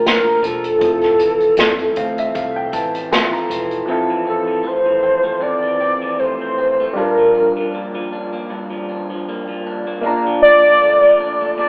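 Indie pop with a bedroom pop lilt, this nostalgic, sunny excerpt moves at an unhurried 78 BPM in 4/4 with a light swing on the sixteenths, set in F major. A velvety, smooth synth lead carries the melody up front, its sawtooth-and-triangle tone sustained with a fast attack, chorus and vibrato. Beneath it, an electric guitar through a small old amp adds slightly broken-up, compressed picked accompaniment with a warbly pitch drift, while a woody upright piano with long sustain plays throughout and slips in a fill from 1.6 seconds. A dark, round, foam-muted fingered bass sits in the background, and a roomy, distant acoustic drum kit played with bundle sticks, with a tight kick, medium-tuned snare and hi-hat, sounds up front until both drop out near 3.9 seconds, leaving the guitar, piano and lead to carry the second section. The harmony drifts from Bbmaj7 to Fmaj7, then to Gm7 and back to Bbmaj7, all bathed in a moderate recital-hall reverb with a telephone-like character.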